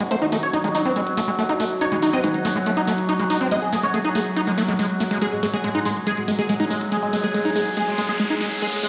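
A screaming, squelchy distorted acid riff with chorus and tape echo drives this hypnotic psychedelic trance build-up at 141 BPM, joined by a thick, nasal, detuned unison lead with phaser and delay, a resonant drone of moving overtones sustaining chords under phaser, an overdriven electronic hi-hat, and a riser entering at 6.5 seconds, all bathed in lush hall reverb through a filter sweep on a G#5 chord.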